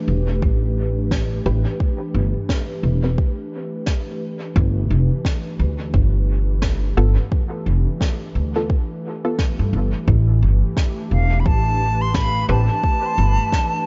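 A small, dark-toned room holds this hazy, spacious ambient dub fragment at 87 BPM in 4/4, with a swung sixteenth feel moving from A7(no3) to G7 and back. A woody pizzicato upright bass and a deep, tape-warm electronic kick sit up front. Around them a brushed snare trails dub echo, a breathy, detuned sawtooth pad drifts with chorus, and muted, filter-plucked chord stabs pass through cassette tape, chorus and dub echo, until a bright silver concert flute enters at 11.1 seconds with vibrato and its own dub echo.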